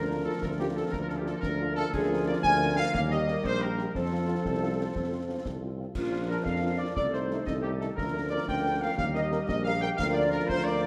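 A proud, festive military-style march for wind band in Bb major, moving in 6/8 at 119 BPM, with a punchy, tight trumpet section carrying the melody while a hollow, pure-toned flute section and a smooth-topped woodwind section add second lines in the background. Clear, close-miked trombones hold sustained chords, mellow French horns accompany from a distance, and a roomy tuba sits up front on the bass, with concert snare, bass drum and bright clash cymbals joining at 0.4 seconds. The whole band sounds from a wet scoring stage, and the brief cut from a longer piece cycles through Bb, Eb and F harmonies with a passing diminished chord.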